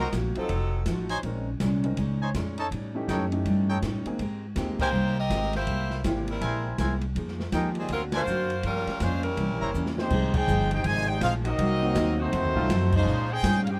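A swung 4/4 big band swing excerpt, sultry and dramatic, where a pizzicato, woody upright bass and a dark, boomy-kicked jazz kit drive an edgy, vibrato-laden saxophone section melody against tight trumpet stabs, a bright picked steel-string guitar in the background and a concert grand piano with deep bass, until a drum fill at 9.7 seconds hands the tune to a clear, soft-attack trumpet melody over a close-miked trombone second line and faint, distant saxophone chords in a small booth-like room.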